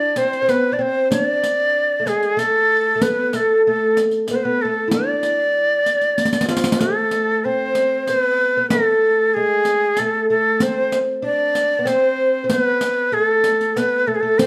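A breathy, reedy ney carries the melody up front in this soulful, longing excerpt from a longer Arabic maqam ensemble piece in 3/4 with a straight feel. Its end-blown cane tone is bright and tongued, shaded with vibrato as it sings in the upper register. Beside it, a fretless oud plucked with a plectrum plays a second line lower down, its double strings giving a woody, warm voice that also sits close to the listener. The riq enters at 0.2 seconds with bright, jingling, hard-handed strokes heard in a small room. A short drum fill from 6.2 seconds leads into a new section at 6.8 seconds. The whole ensemble sits in a wet studio reverb, and the production leans dark and warm.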